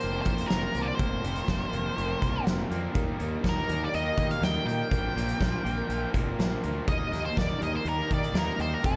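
A light reverb gives this gritty, brooding nine-second classic rock clip a natural sense of space, with a big rock drum kit up front whose fat snare, punchy kick and hi-hat ring out in a large room. The tempo sits at 122 BPM in a straight 4/4, and all parts play together from start to finish. A dark, distorted octave-fuzz lead guitar carries the melody up front, while a growly fuzz bass, fingered and overdriven, fills the low end. Two picked electric guitars hold riffs in the background: one overdriven and compressed, the other a raw, overdriven garage tone. Beneath them, a very quiet ladder-braced acoustic guitar with old strings adds a woody, boxy accompaniment. The harmony moves from Bbsus2/F to Eb at 3.0 seconds, returns to Bbsus2 at 4.9 seconds, and lands on Eb again at 6.9 seconds.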